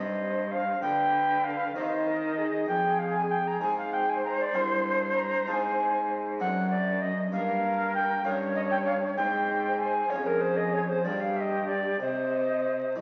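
Solemn and grave, this fragment of a baroque-style sonata movement in C minor moves at 64 BPM in a straight 6/8, counted in dotted quarters. An up-front tenor recorder carries the melody with a woody, chiffy, tongued tone and gentle vibrato, while a mellow concert flute adds an airy, expressive second line beneath it. A single bowed cello supplies a rich bass with soft attacks and portamento, and a round, dry, close-miked Italian-style harpsichord plucks the accompaniment in the background, all set in a reverberant recital hall and heard through the crackle and dull top end of a very old 78 rpm record.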